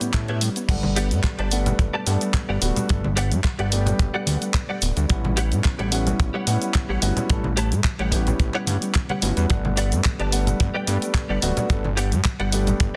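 This sunny, groovy nu-disco excerpt opens on several parts at once: a concert grand piano accompanying with deep bass and tape echo, and soft, round triangle-and-sine pluck arpeggios sitting dark in the background through chorus and cassette-tape colouring. A fat, detuned sawtooth bass sits up front, and a layered electronic pop kit brings crash, handclaps, hi-hat and shaker, with very quiet, saturated congas and egg shaker beneath. A dry, tight acoustic kick arrives at 0.1 s and a clean, picked electric guitar riff, recorded direct, enters at 0.3 s with ensemble chorus and tape echo, while the piano and pluck pump against the sidechain over lightly swung sixteenths and A9, Gmaj7 and A13 harmony in a dense, heavily limited modern master.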